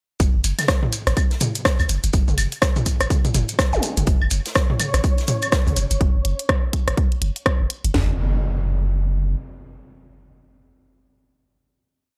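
A quirky, cool minimal techno piece in F# minor at 124 BPM with swung sixteenths opens straight into a drop, where a deep, pitch-dropping sub bass pumps beneath an overdriven, up-front house kit's four-on-the-floor kick, cracking snare, floor tom, closed hats and rim clicks, joined by a very quiet, airy looped big-band breakbeat, vintage band-limited maracas and delayed electronic toms and claves in cross rhythm, while a zap flashes at 3.7 s, a flickering, grainy held high note drifts in at 4.7 s, and once the house kits stop, transition impacts carry the final note to 11.7 s.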